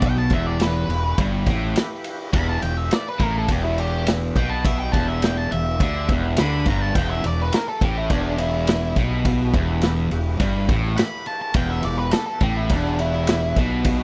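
A small, pumping room sound frames this brooding, smoky blues rock and southern rock power-trio excerpt in E minor at 104 BPM, where a dark octave-fuzz lead guitar with slapback echo solos from 0.0 to 13.6 seconds over a bright, double-tracked crunchy guitar riff with spring reverb, a growly fuzz fingered bass, a punchy vintage drum kit of kick, snare and dark ride cymbal, and a very quiet, gritty tonewheel organ holding sustained chords through a slow rotary speaker.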